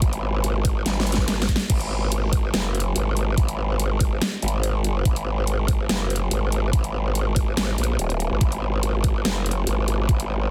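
A half-time 4/4 groove at 143 BPM drives this chaotic, heavy wobble dubstep cut from a longer piece, with a knocking electronic kick and a layered dubstep kit of crash cymbal, hi-hat and a huge, up-front snare, both touched with studio reverb, and a drum fill at 0.9 to 1.7 seconds. Up front in the low end from D#1 to A#1 is an aggressive, wobbling growl bass, its sine tone pushed through a formant filter with a fast attack, overdrive and chorus to sound saturated, bright and sustained. The mix is dry, dense and heavily limited in a modern master.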